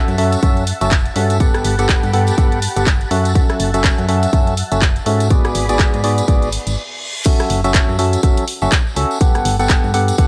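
Swung sixteenths at 123 BPM drive this soulful, bittersweet piano house piece in F# minor, with a punchy, up-front electronic kick anchoring a tape-toned house kit of handclaps, hi-hat, rim click and crash, while a distant tambourine sits in the background. A hollow, nasal organ stab plays the riff up front, colored by chorus and tape echo and pumping against the kick, over a round, dark FM bass with a fast attack. A silky, detuned string pad holds sustained chords in the background with ensemble chorus and vibrato, moving through F#m7, Gmaj9 and G#m7b5. The pad drops away at 6.8 seconds as the groove briefly stops and a reverse cymbal rises from 6.5 seconds into the drop at 7.3 seconds, where the organ, bass and drums carry on. The sound is dry and gritty, like a hardware recording, in this excerpt from a longer track.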